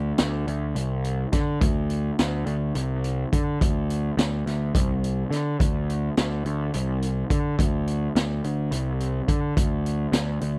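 A dark, overdriven fuzz bass, picked and punchy between C2 and D3, opens this hypnotic, mysterious psychedelic rock excerpt in a straight 7/8 at 211 BPM, joined at 0.2 s by a raw garage drum kit with a boomy kick, high-tuned snare and hi-hat, its small-room sound gritty and saturated with a rolled-off top, both parts up front in a dry, close 1970s-style studio recording.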